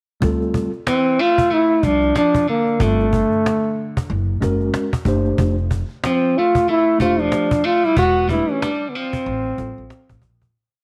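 Light studio reverb surrounds this cool, smoky jazz-hop piece in D minor at 93 BPM, with a swung 16th feel and a fade-out from 8.0 seconds. Up front, a punchy, forceful trombone plays a motif-based solo melody with scooped notes, shadowed by a slightly broken-up picked electric guitar harmony line mostly in sixths, while a mellow tine electric piano comps freely in quartal voicings. Underneath, a woody, growly pizzicato upright bass plays a syncopated line with chromatic approach notes, and a snappy cajon struck with hard hands drives a boom-bap beat under a swung ride cymbal.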